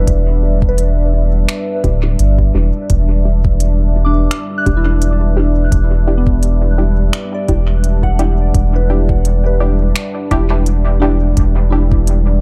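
A deep, moody sawtooth pad with chorus and built-in reverb, a soft, pure FM synth bell tracing arpeggios through chorus, phaser and dub echo, and a round, up-front sub bass open this meditative ambient dub excerpt in E minor on an Em7 chord at 85 BPM with a light 16th-note swing, joined at 0.1 seconds by an overdriven soft electronic kick sitting in the background and an overdriven organic electronic kit of finger snaps and crisp hi-hats soaked in dub echo, while from 0.4 seconds a muted, detuned dub chord stab plucks short chords under a filter sweep, all in a dry, echo-heavy mix.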